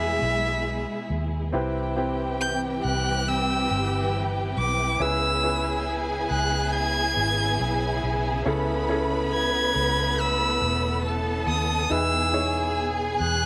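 A close, warm solo violin sings the melody with vibrato, portamento and a slapback echo in this tender, heartfelt pop excerpt at 69 BPM, set over a clear baby grand piano, lush dark symphonic strings, a round, punchy, foam-muted electric bass up front and a rich studio violin section that joins at 1.5 s with a second line, all within a small room as the harmony moves from Emaj7 through Cmaj7 and C#m7 back to Emaj7.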